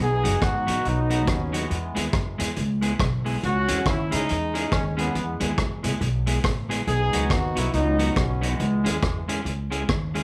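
A smooth-topped horn section carries the melody up front, its light vibrato and slapback echo giving this cheerful, joyful ska excerpt a polished pop sheen before the horns stop at 9.3 seconds. Underneath, a woody, growly upright bass played pizzicato sits close in the mix, its thumpy steel-string tone anchoring the low end throughout. A clean, picked electric guitar enters at 0.2 seconds, sitting further back as accompaniment with its own slapback echo. A vintage drum kit joins at the same moment with a punchy kick, rim clicks and hi-hat, its saturated, gritty sound and rolled-off top keeping the beat mid-forward. The swung eighths roll over a cycle of B, E, C#m and E chords, all set in a small room with light reverb.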